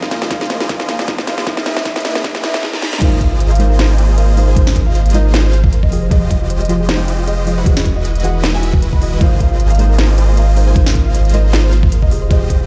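This euphoric, playful future bass passage at 155 BPM in Ab major opens on a build-up of huge, detuned supersaw chords with phaser, a thick, saturated sub bass, a trap kit with sharp snare and crisp hats, and a dark, boxy baby grand piano melody with dub echo sitting in the background. It is joined almost at once by a very quiet tine-like FM pluck playing arpeggios, a faint riser and reverse cymbal, and an overdriven, knocking electronic kick up front. The drop lands at 3.0 seconds in a half-time, lightly swung feel, bringing in a soft, round, wave-folded pluck with chorus as accompaniment while sidechain pumping moves the chords, bass, piano and that pluck, all in a dry, loud, high-passed mix led by the bass and kick.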